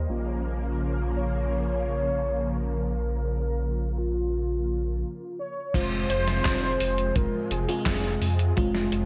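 Driving and cinematic, this synthwave excerpt moves at 85 BPM in a straight 4/4 feel in F minor, opening on a Bb minor chord and settling onto F minor at 5.7 seconds. A velvety synth lead carries the melody with chorus and delay, over a silky, nasal string pad that holds sustained chords with ensemble chorus and sidechain pumping. A lush, dreamy FM electric piano layered with a soft pad adds stabs colored by chorus, phaser and a low-pass filter, while a deep, rumbling detuned saw bass sits up front with a beating, dark tone. After a brief break from 5.0 to 5.7 seconds, a gated 80s digital drum machine enters with crash cymbal, handclaps, hi-hat and a gated-reverb snare, joined by a punchy, gritty acoustic kick in the background. The production is dark and warm, with light reverb and a low-pass filtered character.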